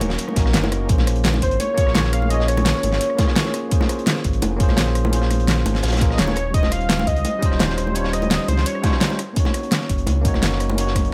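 A deep, full sine sub bass with an octave layer sits up front in this lush, soulful liquid drum and bass, cut from a longer piece and running at 170 BPM in straight 4/4 in Bb minor. A very quiet, distant chamber string section holds earthy bowed chords with light vibrato only until the drop at 0.9 s, where the harmony moves from Gb6 to Bbm9, later passing through Eb13 and returning to Gb6. A bell-like tine electric piano with dub echo plays a bright, clean accompaniment throughout. Above it, a velvety synth lead carries the melody in two phrases starting at 1.4 s; it blends detuned sawtooth, triangle and sine with a sub octave, and adds chorus, vibrato and dub echo. The drums layer a punchy, tape-warm electronic kick from 0.4 s with a produced pop kit whose fat snare, rim click and metallic hats sit up front. Beneath them, a gritty, saturated breakbeat kit with a rolled-off top adds texture, while round, low-tuned bongos play in the background, all framed by a small room reverb.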